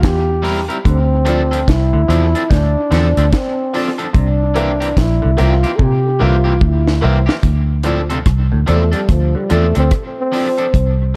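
Swung sixteenths over a laid-back 73 BPM in 4/4 drive this hypnotic roots reggae excerpt in D minor, where a dry, dark drum kit with a high-tuned snare, tight kick, rim clicks and hi-hat sits up front under analog delay, beside a round, foam-muted electric bass. A breathy, whispered trombone with light vibrato and scooped notes carries the melody through tape echo, while a slightly broken-up, twangy electric guitar, a stringy, very quiet clav playing arpeggios, and a worn, woody upright piano with audible action noise adding stabs in the background fill out the echo-heavy mix. After a drum fill from 5.8 seconds, the trombone takes a solo at 7.4 seconds as the chords move between C7 and Dm7.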